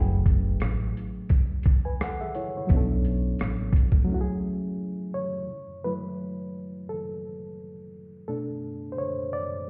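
A reedy electric piano opens this melancholic, nostalgic lo-fi hip hop fragment alongside a woody pizzicato upright bass with steel strings, both placed up front. The piano sounds worn and slightly out of tune, played through its built-in speakers and softened by cassette tape and a low-pass filter. A compressed, pitched-down, sampler-style boom bap kit joins almost at once with a thumpy kick, hi-hat and rim click, its gritty texture riding a lightly swung sixteenth-note feel. The bass drops out at 3.7 seconds and the drums at 4.1 seconds, leaving the electric piano alone through a short break before it takes a solo from 5.5 seconds to the close over drifting minor-seventh harmonies. The whole recording sounds muffled, as if heard through a wall, with tape coloring and only a faint stone-room ambience.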